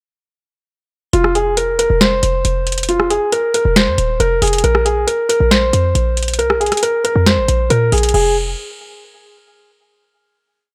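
Light reverb gives this short, complete trap piece a faintly roomy sheen, with the piano, bass and drums all placed up front. It moves at 137 BPM in a half-time 4/4 feel, in F minor and tuned to A4 = 439 Hz, and the mood is eerie and menacing. A dark grand piano carries a mellow, vintage-toned looping melody between F4 and C5, its long sustain repeating like a sampled loop over an F5 chord that shifts to Bb5 at 4.6 seconds. Beneath it, a punchy, tight 808-style bass built from a sine tone with a noise layer holds long sub-bass notes from Eb1 to Bb2, sliding in pitch with a fast attack and a decaying tail. A booming, dry analog drum machine lays down the half-time beat with a tonal snare, rim clicks, crash cymbal and metallic hi-hats that break into fast rolls. All three parts enter together at 1.1 seconds and play through the verse, dropping out between about 8.2 and 8.5 seconds, leaving the piece to finish by 9.9 seconds.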